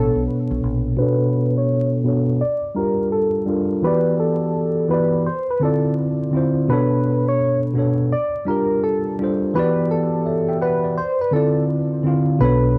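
A home cassette recording with vinyl crackle and a moderate studio reverb gives this lo-fi hip hop excerpt a hazy, reflective air. At 84 BPM in 4/4 with a swung sixteenth-note feel, it sits in B minor and moves through Bm9, Gm9, Em9 and Dm9 chords twice. A worn, slightly out-of-tune tine electric piano carries the accompaniment up front throughout the excerpt, filtered and tape-softened. Alongside it, a gentle FM synth lead with a keys-like, quickly decaying strike plays the melody, its tone shaped by chorus, vibrato, tape, a low-pass filter and plate reverb. A round, punchy fingered dub bass sounds only at the opening and returns at 12.4 seconds, while a filter sweep runs from 1.0 to 12.4 seconds across the middle stretch.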